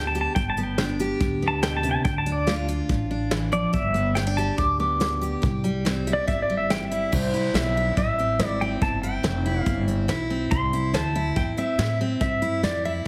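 A straight 4/4 shuffle-free pulse at 142 BPM drives this nostalgic, down-home slice of honky-tonk and classic country in C major, cut from a longer piece. A soft brush drum kit keeps time with a punchy kick, a medium-tuned snare, hi-hat and crash cymbal, while an upright bass plucked on gut strings supplies a woody, thumpy low end. A bright, full-bodied dreadnought acoustic guitar, picked and up front, fills out the accompaniment over chords moving from G to Dm, back to G and on to C. The clean, compressed pedal steel guitar, played with fingerpicks and slide and marked by volume swells, carries the melody as a featured solo for the first 7.1 seconds before the tune moves into a second section. A moderate large studio reverb gives the band some space, and the whole performance has a heavily compressed, radio-like sound.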